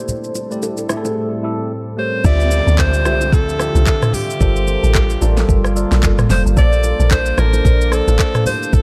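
A dark, dry production carries this soulful, hypnotic amapiano piece, where a worn, slightly out-of-tune tine electric piano with phaser and a moody, warbling pad with chorus and sidechain pumping open over a smooth R&B drum kit and very quiet congas and bongos, an edgy alto saxophone with scooped notes and delay takes the solo from 2.0 seconds, and the drop at 2.2 seconds brings in a deep, round log drum bass up front along with a downlifter in the background.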